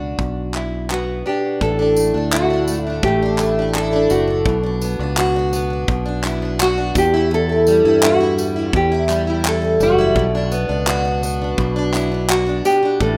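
A wistful, tender acoustic pop piece in B minor at 84 BPM, cut from a longer work, opens with a fingerpicked classical nylon-string guitar carrying the melody through delay, over an up-front, double-tracked plugged-in steel-string acoustic guitar whose picked accompaniment carries audible finger squeak and a direct, warm fingered electric bass, with a polished, airy drum kit of tight kick, handclaps and tambourine joining at 0.2 seconds, all set in a rough home-demo mix with moderate plate reverb as the chords move from B minor to A suspended fourth, back to B minor, on to E minor and home to B minor.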